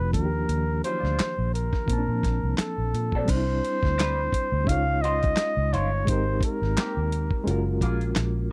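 R&B and neo-soul in a relaxed, smooth mood, this dry, close 1970s-style studio fragment puts a jazz-style flugelhorn melody with light vibrato and scooped notes up front, over a reedy, overdriven electric piano with fast tremolo, a dark, round, foam-muted fingered bass, and a gritty, compressed sampler-style kit of thumpy kick, handclaps, hi-hat, snare and crash. A slightly broken-up guitar with wah and spring reverb enters at 0.9 seconds in the background, as the chords move from Ebmaj9 through Cadd9 to Gbmaj9.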